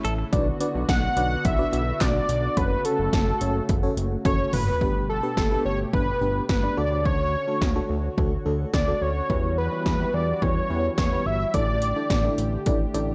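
This cool, melancholic synth-pop excerpt at 107 BPM in a straight 4/4 opens with everything but the lead at once: up-front 80s electronic pad drums with a punchy kick, metallic hi-hats, handclaps, toms and an overdriven gated snare, over a fat, detuned analog bass that carries ring modulation and a filter sweep. Beneath them sits a smooth sawtooth pad holding sustained chords with chorus in the background, while a mellow FM electric piano with tremolo and a phaser adds decaying accompaniment. At 0.9 seconds a bold, nasal unison lead takes the melody, its detuned sawtooth tone thickened by a sub octave, warbling vibrato and a slapback echo. The harmony moves from Bm to F#m, and a drum fill from 4.3 seconds leads into a new section at 4.8 seconds that travels through Gadd9, Dmaj7 and Emadd9 before resting on A7sus4. Light reverb frames the mix, and the gated reverb on the snare and toms gives the drums their signature punch.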